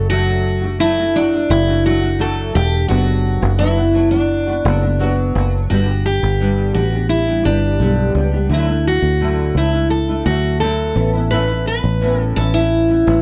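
Easy-going and sunny, this short acoustic pop passage moves at an unhurried, straight four-beat pace, with a full-bodied picked steel-string acoustic guitar carrying the melody up front. Beneath it, a double-tracked nylon-string guitar fingerpicks a classical-toned accompaniment, complete with audible finger squeak, while a punchy, foam-muted fingered electric bass sits close and direct. The dry, close sound recalls a 1970s studio, and the harmony shifts from D/F# and Bm/F# into a second section at 5.7 seconds built on G, Dadd9 and Aadd9.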